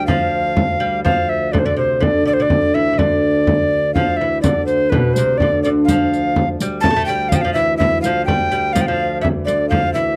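Mysterious and driving, this medieval dance in D dorian moves at 124 BPM in a straight 3/4, cut from a longer piece and captured as a dry, close studio recording with a 1970s character. An airy, up-front tenor recorder carries the unsteady melody with a soft, chiffy attack, over a bright, fingerpicked lute second line on doubled gut strings, a reedy, breathing pedal harmonium drone on D2 in the background, and a deep frame drum played with soft hands. At 4.4 seconds the riq joins with bright, close jingles under hard hands as the opening passage repeats.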